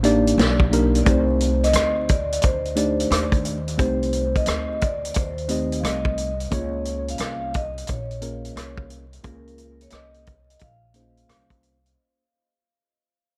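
This mellow, nocturnal jazz-hop excerpt opens on a rootless Cm9 voiced by a worn, slightly out-of-tune tine electric piano, its clean tone trailed by dub echo, over a pizzicato upright bass with a woody, dark sound and a vintage acoustic drum kit of hi-hat, kick, rim click and snare. The kit sits up front with a punchy kick, a medium-tuned snare and a rolled-off top, swinging the 16ths at 88 BPM in 4/4 in C dorian. At 1.0 seconds a vibraphone played with soft mallets enters with the melody, metallic and ringing with a slow motor vibrato, and its notes also carry dub echo. The harmony moves to Cm69 and then to Db6 at 6.5 seconds, while the whole piece fades out from 1.1 seconds onward. The mix is echo-heavy, with studio reverb and a layer of vinyl crackle that lends it a late-night feel.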